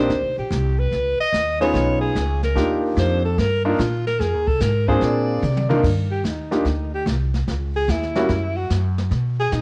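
Jazz in a sophisticated, swinging small-group swing and bop style at 147 BPM in Eb major, this passage cut from a longer piece features a breathy, whispered alto saxophone soloing with vibrato up front, backed by a polished grand piano that stops at 8.3 seconds, a woody, growly pizzicato upright bass, and a dark, smooth brush drum kit with a boomy kick that plays a fill at 5.4 seconds, the sax, piano and drums carrying a cassette-tape tint inside a small room reverb.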